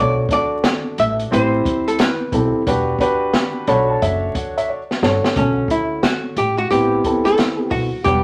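A clean, picked hollow-body archtop guitar carries the melody from the first moment, up front beside an intimate vintage upright piano whose audible action noise and long sustain colour the accompaniment, while a growly, thumpy pizzicato upright bass sits low underneath. An acoustic jazz kit joins at 0.3 seconds with hi-hat, a boomy kick and a medium-tuned snare, sounding smooth and close in a small room. This nocturnal, mellow jazz-hop fragment, cut from a longer piece, swings gently in four over minor ninth chords moving from Bm9 through Am9 and Em9. The piano takes a fill at 3.3 seconds, the drums add one of their own shortly after, and at 5.4 seconds the guitar breaks into a solo. Moderate studio reverb and a layer of vinyl crackle give the whole a dusty, late-night glow.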